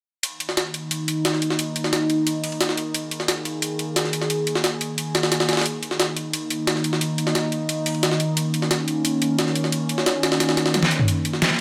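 Light reverb gives this short excerpt of dark, futuristic technical drum and bass a compact sense of space, with both drum kits up front in small-room ambience. At 177 BPM in a straight 4/4, a detuned, wave-folded pad sustains chords from Eb3 to Ab4, its sawtooth and triangle tones evolving through chorus and phaser with a slow attack and long release, and it opens on an Eb5 chord. Alongside it, an electronic dubstep kit layers a deep snare, bright hi-hats and toms, all driven through overdrive. A second, sampler-style jungle kit adds a compressed, pitched-up, gritty sound with a high-tuned snare, ride cymbal and hi-hats, its snare and cymbals high-pass filtered and its tone tape-warm. A drum fill from 10.7 to 11.1 seconds caps the passage before the parts stop at about 11.6 seconds.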